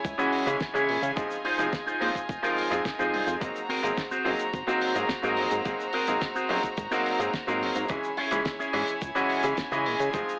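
This sunny, groovy nu-disco passage opens at once with a chamber violin section holding sustained chords. Its bowed tone is clear and biting with light vibrato, and sidechain pumping shapes it. Alongside the violins, an electric guitar plays a dark, clean, picked riff through an envelope filter, with subtle chorus and dub echo. Underneath, a chorused synth bass adds a retro, glossy, nasal line. A damped 70s drum kit supplies hi-hat, shaker and a fat snare in studio reverb, and an overdriven, thumpy electronic kick sits in reverb of its own. At 0.2 seconds a concert grand piano joins with brilliant, worn, up-front accompaniment carrying dub echo, while the straight groove moves through Dbm, Fm7 and Ab9 before returning to Dbm at 7.9 seconds, all heard through light reverb, small-room ambience and an AM radio sound.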